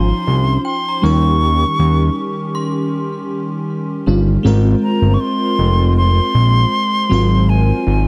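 Contemporary R&B at 79 BPM in Ab major, this dreamy, romantic fragment of a longer piece sets a pure, hollow concert flute with vibrato up front, its melody carrying a touch of delay over a lush FM electric piano with chorus and a dark, slow-attack pad. A fat, thick analog bass sits prominently beneath, while a ringing, inharmonic synth chime with ensemble chorus, tremolo and delay glimmers faintly until 3.9 s. The chords move from Dbmaj9 through Eb7 to Ab69 and Ab13 in a dry, close sound.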